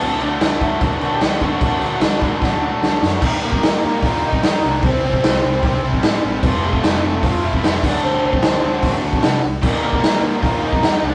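A fast, energetic punk rock cut at 150 BPM opens with a punchy, gritty garage drum kit up front, a raw double-tracked overdriven rhythm guitar, a tight distorted guitar and a round hollow-body picked bass tucked in the background, while a lo-fi overdriven lead guitar from a small cranked amp carries the melody. A drum fill from 2.4 to 3.2 seconds kicks the rebellious band into a new section, where the chords move through Eb, C, F, D and Eb. The rough rehearsal-room recording has a modest small-room reverb and saturated character, and the drums have a rolled-off top.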